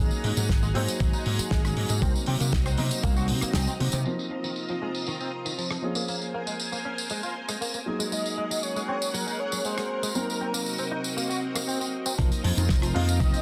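A dense, heavily limited mix with plate reverb carries this sleek, cosmic nu-disco excerpt at 118 BPM, where a dark concert grand piano and a lush, chorused string machine both pump under sidechain while a twangy, filtered clean electric guitar riffs over punchy slap bass, a dry, rolled-off 70s kit with hi-hat, rim click, snare and tambourine, and a gritty electronic kick, until a thick, warbling unison lead takes the melody at 8.1 s and the bass and kick return for the drop at 12.2 s.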